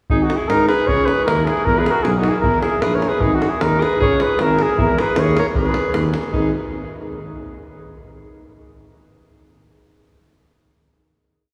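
A restless, bittersweet Balkan brass band piece opens at once with a mellow, punchy cornet carrying a classical-style melody built from short motifs in sentence-like phrases, alongside a clear, forceful alto saxophone with vibrato playing a jazz-tinged harmony line mostly in thirds. Beneath them, a tuba with a soft attack and light vibrato holds root and fifth on the main beats, while a deep davul drives a two-stick pattern in a brisk 2/4. The band sits in a cathedral-like reverb, and the short piece closes on a held final chord at 6.3 seconds.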